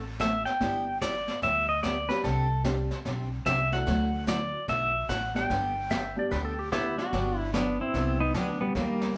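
A swung 4/4 feel drives this playful western swing passage, cut from a longer piece. A vintage brush drum kit carries it on brushed snare, hi-hat and a punchy kick, with a muffled, gritty, rolled-off sound that suggests a small room. A woody pizzicato upright bass holds down the low end throughout. A picked dreadnought acoustic guitar with fresh strings adds full-bodied chords, and a dark upright piano with short sustain fills in mellow accompaniment from 0.6 seconds until about 7.1. Out front, a twangy pedal steel guitar carries the melody with fingerpicks, slide and volume swells, its tone clean and compressed. A bright lap steel guitar sounds a brief second line at the very start and returns from 5.9 seconds, while the band plays live in one room under a wet studio reverb through chords moving from D7 to G6, Csus2, Dadd9, G and finally Gmaj7.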